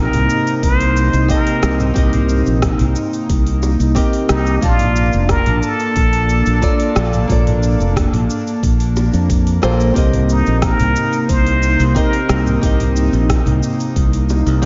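A straight 90 BPM groove in 4/4 carries this smooth, blissful sunset chillout excerpt, where a breathy plunger-muted trumpet sings a wah-wah melody with light vibrato and scooped notes over fingerpicked nylon-string guitar through analog delay, a detuned, chorused pad with a noise layer and ring modulation, a growly, up-front fingered bass with tube saturation, a metallic-hatted electronic R&B kit, a gritty, thumpy electronic kick from 0.6 s, and tight, high-tuned bongos flickering in the background at 3.6, 9.0 and 14.3 s, all moving from Cm7 to Bbmaj7 and back within a dreamy, lush hall reverb.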